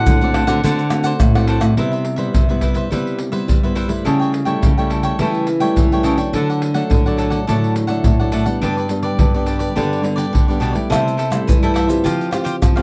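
Lively and joyful, this short excerpt of samba and choro in C lydian moves at 105 BPM in a straight 4/4, opening on a brief, mellow clarinet solo with a soft attack that sounds only for the first 1.2 seconds. Beneath it, a bright, crisp picked cavaquinho and a small, fingerpicked nylon-string guitar share the accompaniment, while a second, full-bodied classical nylon-string guitar carries the bass, all playing through to the end at 12.8 seconds over chords moving from D7 through Cmaj7, A7/C#, D and G to C6 and Fsus2. Egg shaker, deep surdo, pandeiro and tamborim, struck with hard hands and set up front in a small room, fill out a dry, close recording in a 1970s studio style.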